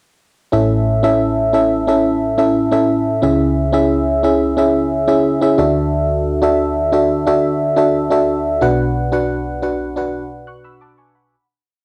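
Syncopated chords in a straight 4/4 at 89 BPM carry this short, nostalgic and uplifting pop piece in A major, played by a solo FM electric piano that sits up front from 0.5 s, moving through A, C#m, Dadd9 and Bm in drop-2 voicings with short fills. Its glassy, bell-like tone has a fast attack, decays, and carries a noise layer, with chorus and a cassette-tape character. The piano sits in a small, reverberant room with the feel of a home cassette recording, and the piece fades out from 8.6 s to 11.3 s.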